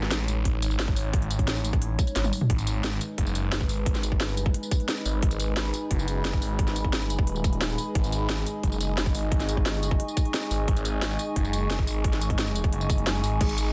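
A dense, heavily limited modern mix with little reverb frames this mechanical, futuristic dark technical drum and bass at 176 BPM in G# minor, holding a single G#m chord from the drop at 0.0 s. A swirling, thick phased saw bass with tube saturation sits up front beside a tight electronic kick and a layered kit with a cracking snare, crisp hats, tambourine, toms and crash, and the kit rolls into a drum fill just before 2.5 s. Underneath, a deep, moody analog pad with sampler grit and a warbling, nostalgic lo-fi tape-like pad pump with sidechain compression, while a punchy unison pluck with tape echo flickers in the background at 13.4 s.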